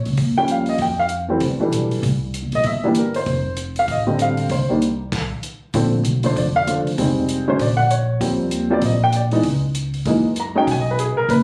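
A slightly detuned, vintage-sounding upright piano sits up front and carries the melody in this playful, swinging jazz piano trio excerpt in F major, moving at a brisk 194 BPM in 4/4 with a swung eighth-note feel. Beneath it, a growly pizzicato upright bass with steel strings gives a woody low end, while a compact cocktail drum kit adds dry hi-hat, dark crash cymbals and a punchy kick at a lower level. The bass opens the clip, and the piano joins at 0.4 seconds. The harmony moves through jazzy colours like Eb9, Fmaj7, C7 and F69. After a brief stop between 5.1 and 5.7 seconds, the second section shifts to Bbmaj9, Fm9 and Gb13. The sound is a phone recording in the room, with light club reverb and compression that give it an intimate, live-in-the-venue character.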